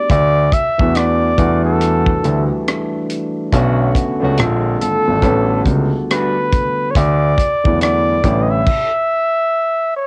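A veiled, forceful bucket-muted trumpet carries the melody up front through this smooth, introspective neo-soul and R&B excerpt, with a cassette-tape grain on its tone. Underneath, a barky tine electric piano plays the chords, a grand piano holds the bass line, and a tight funk kit of kick, hi-hat, rim click and crash keeps a lightly swung groove in a small, dry room, while an electric guitar through a small old amp adds a brief twangy, slightly broken-up line with subtle chorus at 6.1 seconds. The accompaniment stops by 8.9 seconds, leaving the trumpet alone until 10.1 seconds.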